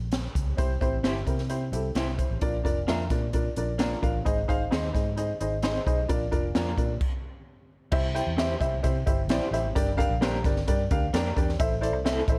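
A straight 4/4 pulse at 131 BPM drives this joyful, danceable slice of uptempo 1960s-style soul in C mixolydian, cut from a longer piece. A vintage muted fingered electric bass opens at 0.0 seconds with a dark, foam-muted, round tone, joined almost at once by a swinging big-band drum kit whose punchy kick, high-tuned snare, hi-hat and dark crash cymbal sit up front with an airy, polished hall character. A woody, slightly detuned upright piano with short sustain and a worn quality comes in at 0.6 seconds, also up front and touched with plate reverb. An electric guitar through a small old amp adds bright, twangy, slightly broken-up stabs with tremolo and plate reverb from 1.0 seconds, its tone lo-fi. The chords move from C through Bb and Ab before a stop from 7.0 to 7.9 seconds, after which the next section returns to C and moves on to Gm and Am. Light reverb and a dark, warm production round out the recording.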